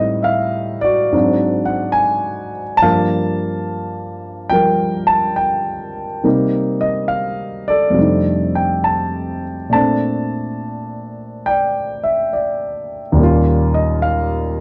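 Warm and gently swinging, this solo jazz excerpt features a dark concert grand piano, placed up front with a mellow tone and deep bass, playing with a loose swing and a rubato feel. Across 14.6 seconds it moves through rich extended harmonies, from Am7b5 and G#7#11 into Gm9, Cm7, F13, Bbmaj9 and Eb9. Light reverb and a dusky, rounded production give the piano an intimate, late-night glow.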